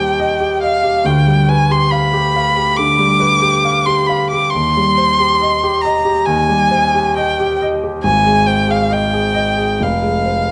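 Classical romantic duo in C minor at a rubato 69 BPM in 4/4, yearning and elegiac in mood, cut from a longer piece. A rich, focused violin carries the melody up front with close vibrato, while a clear, polished grand piano accompanies with long sustain from the deep bass to the middle register, both playing throughout the 10.5 seconds. A moderate recital hall reverb surrounds the pair as the harmony moves through C minor and G7 to an A-flat major seventh at 8.0 seconds before settling on F minor.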